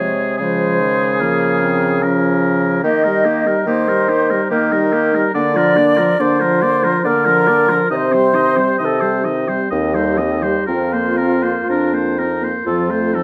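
Classical wind-quintet music in a slow, romantic movement in Bb major, this warm, lyrical excerpt sways in 3/4 at 59-75 BPM with a free, rubato feel. A wooden flute with a pure, expressive tone and vibrato carries the melody until 12.7 s, while a vintage-sounding oboe with light vibrato sings a second line above a clear, smooth-topped clarinet set in the background and a mellow, soft-edged French horn. A mellow bassoon sits up front on the bass, all within light reverb, as the harmony moves from Bbm/Db through Eb and Cm to an Fsus4 that settles on F.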